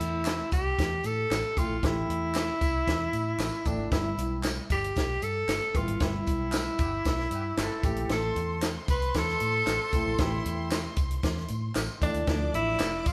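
A live-in-one-room sound with wet stone reverb frames this joyful, uplifting excerpt of uptempo 1960s-style soul at 115 BPM, where a clear, up-front tenor saxophone carries the melody over a dark, woody upright piano, a round, punchy foam-muted electric bass and a tight cocktail drum kit with a high-tuned snare, background handclaps and tambourine join at 0.2 seconds, a punchy horn section enters at 6.8 seconds within the band accent that begins at 6.0 seconds, and a very quiet metallic vibraphone and lush bowed strings fill out the close over chords moving from Am through Em/G to Dm.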